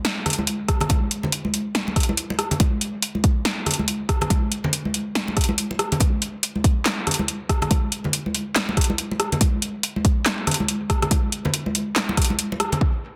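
An overdriven electronic kick drum, deep and up front, anchors this dark, meditative dubstep excerpt, entering at 0.7 seconds and running through to 12.9 seconds. At 141 BPM in 4/4 with a half-time feel and a 59% swing on the sixteenths, the groove sits heavy and unhurried. A deep house drum kit of handclaps, metallic hi-hats, rim clicks and a punchy snare carries the rhythm from the start, re-recorded in a large room, its overdrive and low-pass filtering on the hats, snare and room giving it a grainy, muffled edge. Ringing, medium-tuned acoustic congas played with hard hands join at 0.3 seconds, their live-room sound trailed by dub echo. A brief break arrives at 12.4 seconds, punctuated by a band accent at 12.6 seconds, all within a dense, heavily limited modern master and light reverb.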